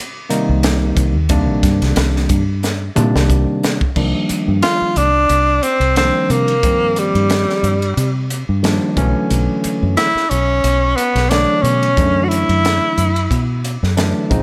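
Nocturnal and driving, this electric jazz fusion excerpt sets a barky, overdriven electric piano and a fingered, foam-muted bass over a crisp drum kit with a high-tuned snare and a pumping small-room sound, moving through a drum fill from 2.6 seconds before a clear, punchy tenor saxophone enters up front at 4.6 seconds with vibrato, scooped notes and tape echo as the harmony shifts from Cm11 to Bm11.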